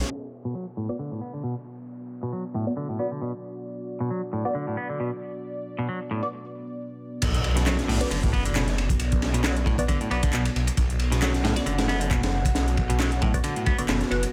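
Energetic and swaggering, this breakbeat cut from a longer piece runs at 135 BPM in 4/4 with a 55% swing on the 16ths, sitting in B minor and tuned to A4 = 436 Hz. A dark, moody analog pad with a chorus and sidechain pumping holds sustained chords throughout, while a bright, twangy clean electric guitar enters at 0.5 seconds with an up-front riff softened by a low-pass filter and digital delay. A muted, nasal dub chord stab with phaser and delay and a very quiet downlifter fill the opening section as filter sweeps move across the drums, stab and pad, leading to a break at 6.3 seconds. At 7.2 seconds the drop lands with an impact: a crunchy, saturated breakbeat kit with a high-tuned snare and rolled-off top returns alongside a swirling, thick phased saw bass. A layered garage kit adds overdriven handclaps and metallic hats, all set in a small room ambience.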